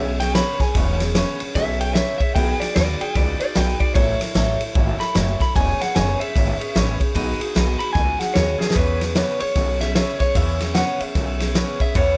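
Rollicking and retro, this rockabilly excerpt swings at 150 BPM in E major, with a twangy, slightly broken-up electric guitar through a small old amp taking a clean solo, drenched in tape echo, until 8.8 seconds. A bright picked archtop acoustic guitar carries the accompaniment, while a woody, thumpy pizzicato upright bass with gut strings anchors the low end. Up front, a vintage drum kit with a punchy kick, fat snare and dark ride cymbal drives things along, dropping a fill at 8.6 seconds before the next section, all set in light reverb.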